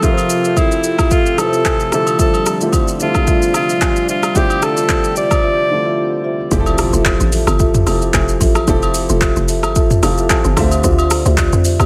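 This deep, soulful amapiano excerpt opens at 111 BPM with a breathy, whispered alto saxophone carrying the melody up front through tape echo, over a dark, mellow grand piano with audible action noise and a lush, warbling unison pad sitting in the background with chorus. A deep house drum kit drives the groove with a deep kick, metallic hats, handclaps, rim click, shaker and toms, while a woody marimba played with soft mallets adds round, close-miked stabs, also touched by tape echo, and agogo bells and woodblock join at 0.2 seconds. The harmony moves between Fmaj7 and Dm11 with a gentle sixteenth-note swing. At 6.5 seconds the saxophone and pad have dropped away as the drop arrives, bringing in a hollow, bouncy log drum bass with a fast attack and decaying tail, marked by a very quiet electronic impact. A vintage-toned piano fill near 9.8 seconds colors the closing stretch, all set in a small room ambience.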